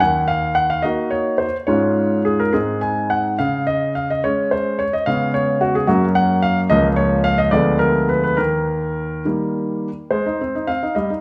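A clear, intimate grand piano sits up front in a wet recital hall reverb, its natural tone carrying audible action noise. This short cut from a longer classical-period sonatina has a cheerful, playful mood, moving in 6/8 with rubato as the solo piano ranges from Db2 to Ab5. The harmony passes through Ebm, Db/Ab and a Ddim7 before a new section begins on Ab at 10.1 seconds.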